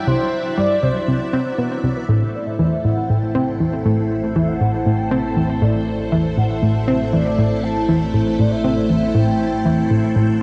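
Ambient, sequencer-driven space music at 119 BPM in 4/4 with a cosmic, luminous mood, this excerpt moves from C to Am at 2.1 seconds. An up-front, detuned analog pluck riff with chorus and delay drives it beneath a lush, vintage string-machine ensemble holding phased chords, while a mellow, horn-like synth lead with a warbling vibrato sings the melody and a very quiet, resonant stepped-filter texture bubbles underneath. An evolving analog drone enters in the background at 3.4 seconds and slowly fades in, all set in a dark production with a long, wet hall reverb.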